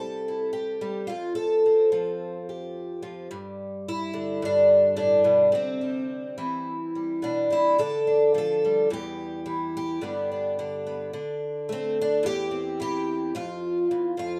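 Peaceful and nostalgic, this short passage from a longer folk piece features a lone picked twelve-string acoustic guitar in straight 4/4, moving through C6, Fadd9 and G before settling on C. Its shimmering, octave-doubled tone with a boxy body sits up front in light reverb, ranging from E2 to A4. At 7.8 s the harmony turns toward Dm, Em and G, passing through D5 and C/E before the chords drop away at 13.3 s.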